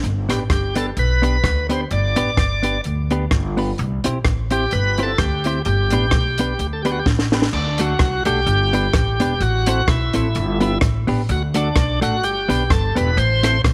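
An upright bass and a compact cocktail drum kit open this cheerful, upbeat ska excerpt at 128 BPM in G major, the woody, pizzicato bass and the dry kit with its punchy kick, high-tuned snare and dark cymbals sitting up front under a lightly swung feel. At 0.3 seconds a bright, shouting tonewheel organ takes the melody, lightly overdriven with key click and a slow rotary speaker, while a clean, compressed electric guitar adds fingered accompaniment. A drum fill at 7.1 seconds leads into a second section built on D, G and Am, all within a small room with light reverb.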